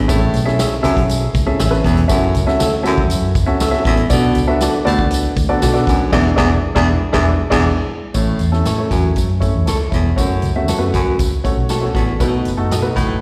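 Warm and joyful, this uptempo 1960s-style soul cut moves at 119 BPM in a straight 4/4 in A major, cut from a longer piece. A baritone saxophone with vibrato carries the riff from the first second, jazz-styled and up front yet roomy, with a slapback echo on its low notes. Beneath it, a dark, foam-muted fingered electric bass gives a round, amped bottom, while a woody, polished upright piano sits present in the accompaniment, also touched by slapback echo. A big-band drum kit with a punchy kick and medium-tuned snare plays in a big natural room, joined by a jingly, close tambourine, and a twangy, scooped clean electric guitar adds compressed, picked stabs in the background with spring reverb and slapback from 0.6 seconds. The chords run Amaj7, F#m7, Bm7 and E7, with a band accent from 6.1 to 8.2 seconds, before shifting to A, F#m and B7 at 8.2 seconds, all heard as a live gig through the venue's PA with a recital-hall sheen.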